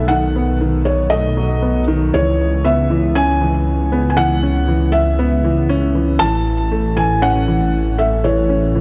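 From the first second, a felt-muted upright piano carries a soft, intimate melody, its thick felt and audible action noise up close, over a mellow, dark baby grand riff in the lower register. Both pianos are bathed in shimmer reverb and tape echo. A deep, rumbling detuned saw bass beats beneath them in this melancholic, cinematic electronica excerpt at 118 BPM in straight 4/4, tuned to A4 = 441 Hz, as the harmony moves from B7 to C#m7 at 2.1 seconds and settles on A at 6.2 seconds, all within a moderate echo-chamber studio ambience.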